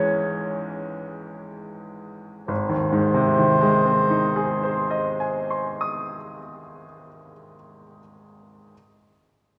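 Serene and tender, this short romantic classical fragment in Ab major, cut from a longer piece, moves with a rubato feel at 49-66 BPM, slowing over the opening 2.5 seconds as a Dbm-over-Ab chord resolves to Ab, while a dark, soft-attacked, distant clarinet sings a narrow melody until 5.9 seconds above a clear, polished, up-front baby grand piano accompaniment that continues alone to 8.8 seconds, all bathed in a long, wet church reverb.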